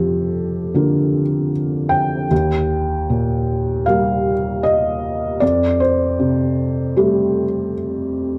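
Intimate and tender, this brief fragment of neoclassical minimalist piano drifts at a rubato 77 BPM in Bb major, where a solo felt-muted upright piano, soft, mellow and up front with its action noise audible, moves from Bb6/F through Eb to Fadd9 across 8.4 seconds, framed by moderate studio reverb in a dark production that carries lossy compression artefacts.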